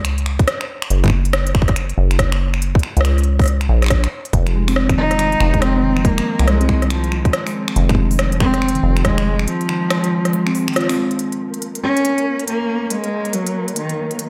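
IDM at 140 BPM in F phrygian, intricate and cerebral, where a rubbery, resonant acid bass and a tight, up-front electronic kick drive swung sixteenths under finger snaps, crisp hi-hat and rim clicks with tape echo, a ringing harp-like pluck adds chorused arpeggios from 4.5 seconds, a bowed cello with vibrato and 12-bit sampler grit sings the melody through dub echo from 5.0 seconds, and after a band accent at 10.8 seconds a flickering granular texture hovers in the background of this echo-heavy mix.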